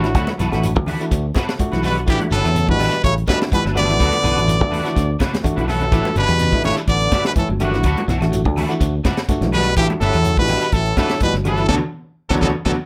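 Afrobeat at 125 BPM in 4/4, this hypnotic, driving passage is cut from a longer piece and rides a lightly swung sixteenth-note feel over a two-chord vamp of D6 and A9sus4. A brilliant, forceful trumpet sits up front with the melody, its punchy tone marked by vibrato and scooped notes, while a very quiet solo trombone with light vibrato and a clear trombone section in the background supply second lines beneath it. A round, dark fingered electric bass and a tight funk kit with a high-tuned snare and a small-room sound anchor the groove, with ringing, saturated congas, a grainy shekere and woody, band-limited claves tucked far back. In the accompaniment, a barky tine electric piano heard through a combo amp and a clean picked guitar playing arpeggios stay in the background, while a twangy, slightly broken-up guitar with ensemble chorus adds stabs. Drum fills arrive at 5.2 and 12.7 seconds, and a band accent from 11.7 seconds closes the passage under light reverb.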